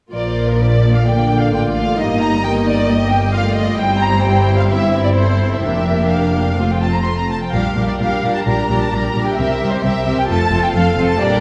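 Heard from further back on a scoring stage, this excerpt sits in a wet reverb with a 1.9-second tail, giving the string orchestra a spacious bloom. It is a quick, spirited and cheerful classical-period movement at 130 BPM in 4/4, played with a rubato feel. It begins in Bb major and turns toward F major at 7.5 s. The first violins carry the melody up front with a rich, expressive tone, soft attacks and vibrato, reaching up to C6, while a second violin section traces a clear, even second line beneath. Violas fill in the accompaniment with a lush, smooth sound, and cellos and double basses share the bass, both focused with a smooth top. All five sections play bowed with vibrato throughout, moving through a harmony that passes from Bb through Eb/G and C/G before settling on F.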